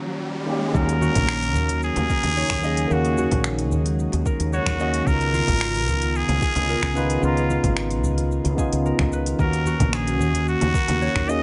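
A steady, straight 4/4 groove at 111 BPM anchors this relaxed sunset chillout excerpt, built on a soft, overdriven electronic kick with studio reverb and a smooth, layered deep house kit of congas, finger snaps, hi-hat and shaker, joined from 1.0 seconds by very quiet, close congas and bongos. A brief electronic riser opens the piece alongside the electric piano before the band arrives at 0.7 seconds, when a round, punchy fretless electric bass, dark and woody with tube saturation and lush chorus, settles in beneath an airy, breathy pad of mellow, detuned sustained chords. A clean tine electric piano with digital delay carries the accompaniment throughout, while a concert harp, fingerpicked and ringing in the background, adds delayed arpeggios. Up front, a trumpet with a straight mute takes the solo melody in jazz style, nasal and raspy with light vibrato, scooped notes, growling grit and tape echo. 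The harmony moves from D#m7 to C#13 at 5.1 seconds and back to D#m7, all wrapped in light reverb and a gentle, rolled-off top end.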